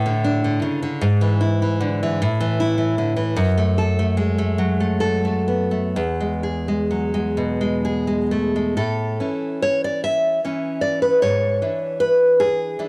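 A sunny, tender romantic piece for solo classical guitar in A major, this 12.9-second excerpt from a longer work moves in a rubato 6/8 at roughly 41-54 BPM by the dotted quarter, its up-front, fingerpicked nylon-string guitar ringing bright with fresh strings and the occasional finger squeak, spanning E2 to E5 through chords such as Aadd11, E7/G#, and F#madd9 before a second section arrives at 8.8 seconds, all carrying a cassette-tape tint from a home recording softened by light studio reverb.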